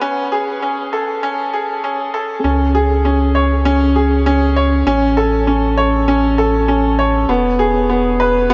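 Bathed in a huge ambient reverb with a long tail, this intimate, melancholic electronica fragment in C# minor at 99 BPM opens with a brilliant, woody upright piano riff, up front and carrying tape echo, until a round, deep sine sub bass arrives with the drop at 2.4 seconds and sustains beneath it to the end.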